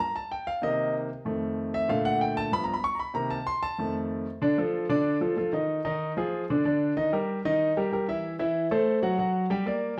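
Lively and danceable, this jazz passage cut from a longer piece moves at 189 BPM in a straight 4/4, with a lone grand piano, clear and intimate with audible action noise, playing between F2 and C#6 through changes like Gm7, Cm7, F7 and Bbmaj7 before shifting at 4.4 seconds to a new section built on Dm, Fm7 and Ddim, all set in a large studio with a wet reverb heard from further back in the room.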